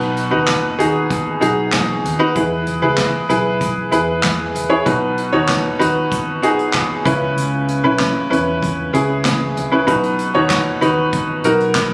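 A bright, slightly detuned upright piano sits up front in this anthemic, piano-driven pop excerpt, carrying the chords over a dark, round, foam-muted picked electric bass and a distant, roomy acoustic drum kit played with bundle sticks on kick, snare, hi-hat, toms and handclaps, before a crisp, very quiet group handclap joins at 10.5 s, the whole mix carrying light reverb and small-room ambience as if captured on a phone in the room.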